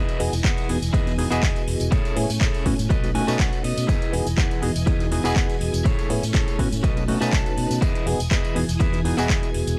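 Filtered disco house at 122 BPM in E major, this joyful, funky excerpt rides a swung 16th-note groove through a bright cycle of Emaj7, Amaj7 and B7 chords, with every instrument except the kick breathing under sidechain pumping. A punchy, overdriven electronic kick sits up front, while a house kit of handclaps, metallic hi-hats and tambourine adds overdriven snap, and a background layer of tambourine, maracas and group handclaps fills in the percussion. A growly fingered bass with tube saturation anchors the low end as a barky, reedy electric piano comps through overdrive, tremolo and phaser. A twangy, scooped electric guitar on the edge of break-up plays a riff coloured by vintage sampler grit, and clean guitar fills arrive at 2.9 and 7.1 seconds. Behind it all, a lush sawtooth string machine with slow attack and ensemble chorus holds sustained chords in the background, and the whole mix carries a dry, gritty hardware sheen with cassette tape and transformer saturation.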